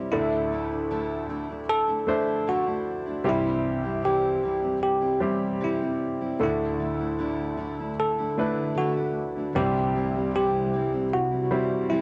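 A bell-like tine electric piano carries the melody up front, bright and clean, over a clear concert grand piano with deep bass and short sustain and a fingerpicked steel-string acoustic guitar playing full-bodied arpeggios on fresh strings. This emotional, hopeful pop excerpt moves at 76 BPM in a straight 4/4, alternating between Dsus2 and C, with a cassette-tape tint and moderate spring reverb giving it a homespun feel. At 7.0 seconds an ethereal, airy pad enters with slow-attack sustained chords, its dark, detuned tone thickened by ensemble chorus and its own reverb.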